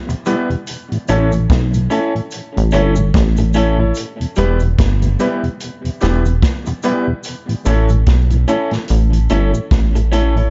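Roots reggae at 73 BPM with a swung 16th feel, meditative and laid-back, moving between Em and A as a punchy vintage drum kit and a plucky, funky analog bass (entering at 1.1 s) sit up front beneath slightly broken-up, lo-fi electric guitar with phaser and tape echo, a round, mellow tonewheel organ with slow rotary speaker and chorus vibrato, short-sustain grand piano stabs and a faint cabasa, inside a small, dark room ambience.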